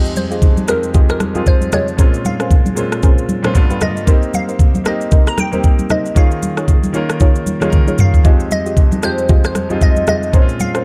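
Amapiano in F minor at 115 BPM with a 58% swing on the 16ths, a soulful, late-night excerpt cut from a longer piece, built on a dark, warm production with little reverb. An electronic drum kit with a knocking kick sits up front with rim click, shaker and toms, a fill landing at 7.7 seconds, alongside bright, thin-skinned congas, while a clear concert grand piano with audible action noise and long sustain and soft, nasal chord stabs carry the Fm9 to Bbm9 and Cm7 harmony. Above them a glassy, crystalline wavetable pluck carries the melody between Bb4 and Bb5, sharing chorus and tape echo with the stabs.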